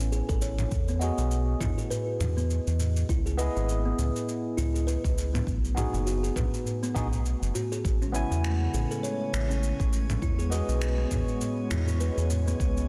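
A round, dark analog bass sits up front with tube saturation and sidechain pumping, anchoring this hypnotic organic downtempo groove at 101 BPM with a swung sixteenth feel. A barky tine electric piano through a combo amp, treated with phaser and tape echo, plays the chords while a woody, hollow kalimba adds echoing arpeggios. The rhythm is driven by a deep electronic kick, a gritty, overdriven sampler-style kit of finger snaps, shaker and toms, and a very quiet clay-shell darbuka under soft hands. From 7.8 seconds a smooth, detuned analog pad adds sustained chords, and at 8.7 seconds a glassy texture of drifting overtones joins in the background, all over a dense, heavily limited master with light reverb.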